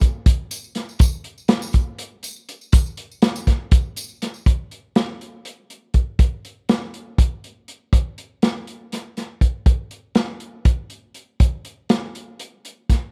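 Rock in a straight 7/8 at 242 BPM counted in eighths, this hazy, hypnotic fragment from a longer piece rests on a vintage acoustic drum kit heard up front from start to finish, its hi-hat, tight kick and medium-tuned snare carrying a mid-forward, rolled-off tone. A jingly, bright tambourine, close and dry, rides along with the kit for the opening seconds and stops at 4.4 s, leaving the drums to carry the rest. The whole take has the dry, close feel of a 1970s-style studio room.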